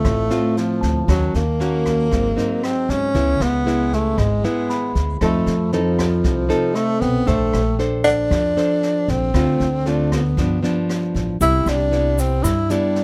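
A dry recording with little reverb, this bossa nova excerpt at 116 BPM moves in a relaxed, sophisticated straight 4/4. Up front, a breathy, whispered tenor saxophone carries the melody with vibrato, subtone and scooped notes over a dark, fingerpicked nylon-string guitar with audible finger squeak. Beneath them are a woody, thumpy pizzicato upright bass and a distant, roomy brush kit with a high-tuned snare, boomy kick and rim click. A clean tine electric piano plays in the background until 9.4 s, and a grainy, bright tube shaker joins at 11.4 s as the chords move from G7 to Cmaj7.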